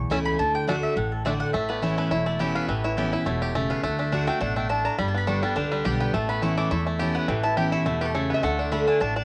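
A mandolin takes the solo spotlight across this joyful, lively bluegrass excerpt, its round, double-strung picked stabs ringing high above the band. Alongside it, a bright, twangy bluegrass banjo carries the melody up front with percussive fingerpicked attack. A jumbo steel-string acoustic guitar fills out the accompaniment with a fresh-stringed, full-bodied sound, finger squeaks audible, while an upright bass gives a woody, thumpy pizzicato pulse from its gut strings. Near the end, from 8.0 to 8.6 seconds, a lap resonator guitar slips in a brief nasal, metallic slide line played with fingerpicks. The swung eighths roll over a D, Aadd9 and G progression, and the home cassette recording, with its tape grain on every part except the bass and a light reverb, lends the whole thing a homespun front-porch charm.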